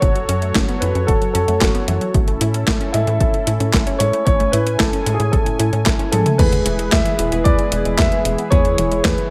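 Lightly reverberant and nostalgic, this italo disco excerpt at 113 BPM pairs a warm concert grand piano melody, tinged with tape echo, against smooth, chorused pad chords carrying a touch of 12-bit sampler grit, while a round, nasal analog pluck sits in the background with chorus, phaser and echo on its arpeggios. A dark, saturated sequencer bass drives beneath a punchy electronic kick and an overdriven, up-front drum machine whose gated snare, claps, hi-hat, toms and crash ring in a small room. After a drum fill at 6.1 seconds, the harmony moves from F#m and A to E at 6.4 seconds, where glossy chorused polysynth stabs join for a melodramatic lift.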